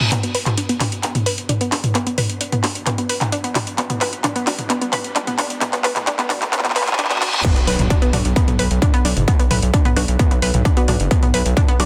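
A filtered, pumping techno kit of claps, metallic hats, toms and crash opens this intense, driving peak-time techno cut in B minor at 131 BPM, with a drum fill and a very quiet riser building alongside a lush, detuned unison pluck riff that carries tape echo and a filter sweep, while a muted, deep dub chord stab sits faintly beneath. A reverse cymbal at 6.5 seconds leads into the drop at 7.4 seconds, where an up-front distorted, overdriven kick lands with an impact and a gritty, aggressive, saturated synth bass pumps underneath. The dense, heavily limited mix has a light reverb.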